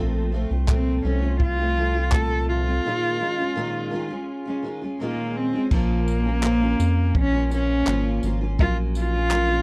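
A dry, close recording in a 1970s studio style frames this tender, wistful acoustic pop fragment in Bb minor at 83 BPM, cut from a longer piece. A double-tracked picked steel-string acoustic guitar with finger squeak and a round, deep analog bass open together, joined at 0.7 seconds by an intimate bowed cello carrying the melody with light vibrato and a soft sul tasto attack, plus a compact cocktail drum kit of punchy kick, dark crash cymbal, handclaps and tambourine. A break arrives at 2.8 seconds over a Dbadd9/Bb chord before the harmony settles onto Bbm and Gbmaj7/Bb in the closing stretch.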